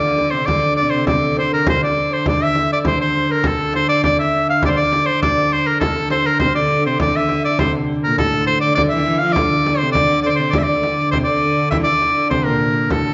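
Ancient and mysterious, this medieval dance excerpt moves at 101 BPM in a straight 2/4, led up front by a bright, present shawm with vibrato and a folk character. Behind it, a mellow flugelhorn with a smooth top shares the shawm's register as a second line, while a bowed, fretted viola da gamba with an airy, floating tone drops out at 1.7 s and returns at 6.4 s. A nasal, reedy hurdy-gurdy holds a distant drone on D3, and a deep, dry frame drum enters at 0.2 s, all played live in one room with a large, wet studio reverb and a dark top end.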